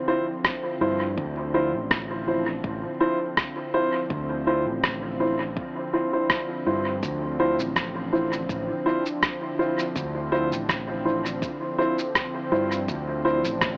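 A dark, woody upright piano sits up front, placing mellow, boxy stabs between E4 and C5 that trail off into dub echo from 0.1 seconds. This is a deep, spacious slice of ambient dub in D minor at 82 BPM, cut from a longer piece, with a gentle 16th-note swing and a single Dm9 chord holding throughout. Beneath it, a smooth analog pad built from detuned sawtooth and triangle tones sustains soft-attack chords with a long release, its lush chorus giving it a warbling, vintage shimmer. Muffled, pitched-down rim clicks and shaker sit close and compressed with their own dub echo, joined by a layered electronic kick from 0.4 seconds, both set in a small room. An overdriven fingered electric bass arrives at 0.8 seconds, round and punchy in its low register. A huge ambient reverb, vinyl crackle and an AM-radio tone colour the whole mix, adding to its hazy, cavernous depth.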